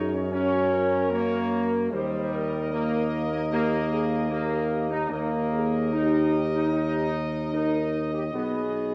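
Classical ceremonial fanfare, solemn and majestic, at a stately 75 BPM in a straight 4/4. It is cut from a longer piece and runs 8.9 seconds. A mellow trumpet section with soft attack and light vibrato carries the melody over sustained chords from a dark, roomy trombone section and a smooth, tight French horn section. A distant solo tuba anchors the bass. The harmony moves from Gb to Eb and lands on Badd9 at 8.3 seconds, all set in a wet recital hall and colored by worn cassette tape with warbly pitch drift.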